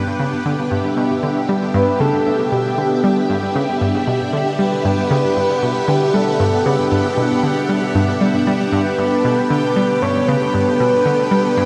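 Ambient, sequencer-driven space music at 116 BPM in G major, luminous and expansive, where a lush vintage string machine holds sustained chords through phaser and ensemble chorus over a round, detuned analog pluck riff with delay, a bubbling, resonant stepped-filter texture sits lower in the mix, and from 1.7 seconds a breathy flute-like synth lead with vibrato carries the melody, all bathed in a huge shimmer-laden reverb in this excerpt cut from a longer piece.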